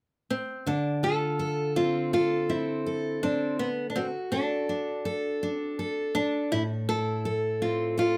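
A bright, fingerpicked nylon-string guitar carries the melody from 0.3 seconds, joined at 0.7 seconds by a full-bodied, picked steel-string dreadnought laying down the accompaniment, both sitting up front in a small room with moderate reverb. This reflective, wistful acoustic pop excerpt moves in a straight 4/4 through Dm7, a rootless Bm7 and Am, its wistful mood carried by the pairing of the small, bright nylon voice against the warm, full-bodied steel-string.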